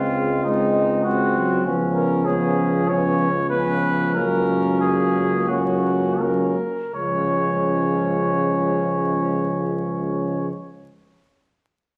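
A free rubato pulse in four slows from 0.4 to 6.9 seconds in this short cut from a longer classical brass quintet piece, triumphant and noble in mood, before the harmony settles on its home chord at 6.9 seconds. A mellow trumpet carries the melody up front while a soft-attacked flugelhorn sings a second line; a distant French horn sits in the background and a trombone with light vibrato and a smooth top fills out the accompaniment, over a clear tuba holding a single low bass note. A wet stone room gives the ensemble a roomy glow, and vinyl crackle lends the sound an aged surface.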